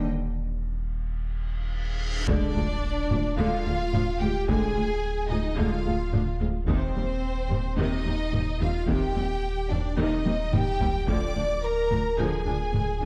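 This brooding, futuristic excerpt from a hybrid orchestral and electronic film score opens with bowed strings, a mellow, distant French horn section holding sustained chords, and a deep, saturated sub bass sitting up front, all moving at 109 BPM in a straight 4/4. Two violin sections carry the upper lines, a focused studio section singing the melody over a lush symphonic section playing a second line, while a smooth, even viola section fills the middle and cellos and double basses anchor the low end from the background. An electronic reverse cymbal rises at 1.4 seconds into an impact at 2.3 seconds, where heavy-stick taiko drums enter, close and dry, and the harmony settles on a diminished chord. A drum fill returns near 10.3 seconds before the diminished harmony comes back, keeping the tension unresolved. The scoring-stage reverb gives the strings and horns a roomy depth within a dark production.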